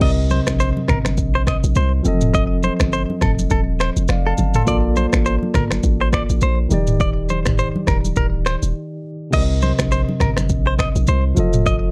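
Afrobeats at 103 BPM in C dorian, sultry and mellow, with a swung sixteenth-note feel over a Cm7, F7, Bbmaj7, Ebmaj7 progression in this short cut from a longer piece. A clean tine electric piano supplies the accompaniment while a bright, twangy, direct-recorded electric guitar plays a compressed, picked riff with slapback echo, all anchored by a deep, boomy 808-style bass with a sine body and a fast, decaying attack. Up front sits an electronic afro-pop drum kit with a deep kick, rim clicks, finger snaps, shaker, toms and crash, and a brief break arrives at 8.8 seconds, while soft-handed congas sit close and dry in the background of a dark, warm, nearly reverb-free mix.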